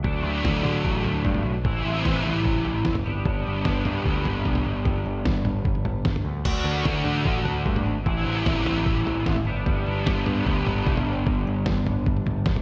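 A straight 4/4 pulse at 150 BPM drives this upbeat yet wistful indie rock fragment in G major, with a lo-fi sampler-style drum kit, pitched down, muffled and re-recorded in a large room, hitting a thumpy kick, medium-tuned snare, toms and crash alongside a warm, overdriven picked bass. Up front, a dark, overdriven electric guitar plays a picked riff through analog chorus and digital delay, while a bright, clean, twangy second guitar riff sits barely audible beneath it. The D6, Am and G progression cycles twice, with a new section arriving at 6.5 seconds, all framed by light reverb and a bright 1980s-style digital sheen.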